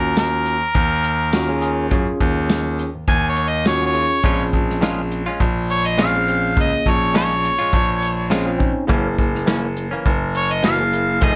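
A mournful, brooding straight-eighth soul blues fragment, led by an up-front, overdriven harmonica with light vibrato and scooped vintage notes, over a clean tine electric piano heard through its built-in speakers and a polished concert grand carrying the deep bass line. A dark soul drum kit in a small room, with a punchy kick, medium-tuned snare, hi-hat and tambourine, comes in at 0.2 s. At 4.2 s a twangy, compressed electric guitar, picked and recorded direct, adds stabs, all under a light reverb as the chords move from Ebm7 to Bbm7 and on to Gb7.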